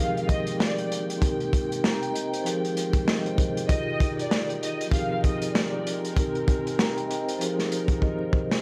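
A crunchy, saturated breakbeat kit sits up front in this tough, gritty boom-bap hip-hop excerpt at 97 BPM in F minor, swung on the 16ths, with mellow, ringing soft-mallet vibraphone through cassette-tape coloring, a lush bowed violin section carrying a tape-echoed melody until 5.8 seconds, and intimate sul tasto strings holding Fm11, Abmaj9 and Ebadd9 chords, all dry under vinyl crackle before a drum fill at 8.0 seconds.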